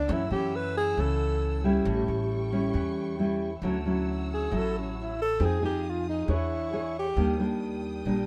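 A breathy, close-miked alto saxophone leads this sunny, sophisticated bossa nova at 135 BPM in D major, its soft-attack subtone phrases scooped and whispered with vibrato, pausing at 1.7 seconds and returning at 4.3 seconds. Beneath it, a thumb-plucked nylon-string guitar with fresh strings sits up front, a woody, dark pizzicato upright bass anchors the low end, and a warm, bowed studio string section adds smooth-topped sustained chords with portamento in the background. Light reverb surrounds the ensemble as the harmony moves from F#m7 and A7 through Dmaj9 to Fm7, E13 and Ebmaj7 in this short cut from a longer piece.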